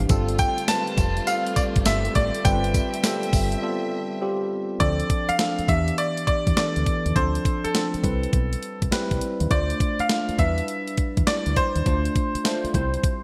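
A swung sixteenth-note groove at 102 BPM in 4/4 drives this punchy, slick slice of new jack swing R&B in D dorian. The groove comes from a clean, sampler-style 12-bit drum machine sitting up front, with a thumpy kick, a medium-tuned snare, hi-hat and tambourine, all tape-tinged and wrapped in gated reverb. Beneath it, a dark, round fingered electric bass with a foam-muted, direct-amped tone holds the low end. A clean tine electric piano with subtle chorus, heard as if through its built-in speakers, carries the chords, while a lush, distant bowed string section with vibrato and portamento adds sustained harmony until 4.8 seconds, through a break that runs from 3.6 seconds. Over the top, a bright, brilliant grand piano plays the melody up close, its long sustain and audible action noise giving it an intimate presence. The chords move from an opening G9sus4 into a cycle that keeps returning to Dm7 between Em7 and Cmaj7, and the electric piano slips in a short fill at 13.0 seconds, all set in a glossy 1980s-style digital plate-reverb ambience.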